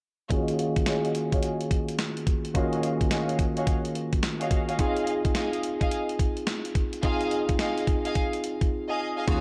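A crisp, thumpy 8-bit drum machine sits up front in this punchy, slick new jack swing piece. Its kick, medium-tuned snare and hi-hat carry a sampler-style character and a small-room edge over a swung sixteenth-note feel in 4/4. Beside it, a clean tine electric piano, heard through its built-in speakers and passed through a low-pass filter, plays the accompaniment over Ebm11 and then Fm7 from 4.8 seconds. Distant, lush bowed strings add expressive stabs with vibrato and portamento, softened by a low-pass filter and trailed by delay, while a filter sweep runs across nearly the whole passage. A bright, amped slap bass lands on a single Eb2 only at 9.3 seconds as the clip cuts off, all within a dark, warm production and a moderate plate reverb.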